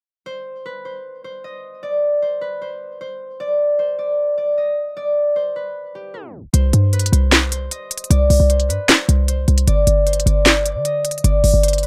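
Dark and eerie, this half-time hip hop and trap cut, taken from a longer piece, moves at 153 BPM in 4/4 and sits in C harmonic minor, tuned slightly sharp to A4 = 441 Hz. An acoustic concert harp opens alone at 0.3 seconds, its bright, fingerpicked, ringing melody kept between G4 and Eb5 over an unharmonised start. A tape stop from 6.1 to 6.5 seconds closes out that opening before the second section lands at 6.5 seconds, where a punchy, tight 808-style bass and an electronic trap kit join the harp. The bass is a sine tone with a noise layer, a fast attack and a decaying tail, ranging from G1 to D3 under C5 and then G5 power chords. The produced kit features a sharp snare, crisp hi-hats and handclaps with a tape-warm character, and all three parts sit up front in a light reverb.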